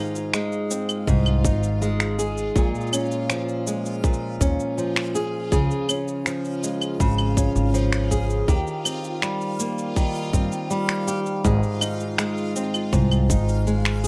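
A fingerpicked nylon-string guitar opens this playful folktronica excerpt in Ab major at 81 BPM, its bright classical arpeggios carrying delay and plate reverb up front while a dreamy, reversed, granular texture swells quietly behind it. Electronic cabasa, finger snaps and claves join almost at once, and at 1.1 seconds a woody pizzicato upright bass and a tight electronic kick settle in beneath. The harmony moves through Ab, Bbm7, Db and Eb6 before returning home to Ab, all within a light reverb.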